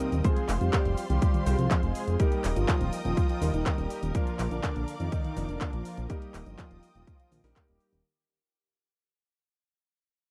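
Mellow synth brass carries a dark, detuned sawtooth melody with chorus and tape echo over lush symphonic strings, background stabs from a clear grand piano and an overdriven house kit of cabasa, handclaps, hi-hat and toms in this nostalgic, melodramatic italo disco excerpt at 123 BPM. A glossy, chorused synth bass sits up front from 0.1 seconds, joined at 0.2 seconds by a punchy, overdriven electronic kick, as the chords move from Fm through Eb and Bb back to Eb. The close, dry 1970s-style studio sound begins to fade out at 2.8 seconds.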